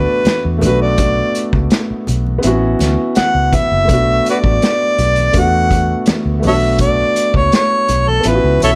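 Smooth and cinematic, this short cut from a longer piece settles into lush 1970s-style soul at an unhurried 83 BPM in B minor, with a straight 4/4 feel. A mellow harmonica carries the melody up front, playing in a jazz style with light vibrato, scooped notes, tongue slaps and a soft attack over a smooth top. Beneath it, a concert grand piano gives open, long-sustaining accompaniment with a deep low end, moving through chords such as Bm7, A69, E9sus4 and Bm9. A dark, round, foam-muted fingered electric bass adds an amped, punchy bottom. From 0.2 seconds a vintage acoustic kit brings a punchy kick, medium-tuned snare and hi-hat with a rolled-off top and a pumping small-room sound, while very quiet, close and dry congas with a bright, thin skin are tapped with soft hands. Light small-room reverb gives the whole blend a gentle sense of space.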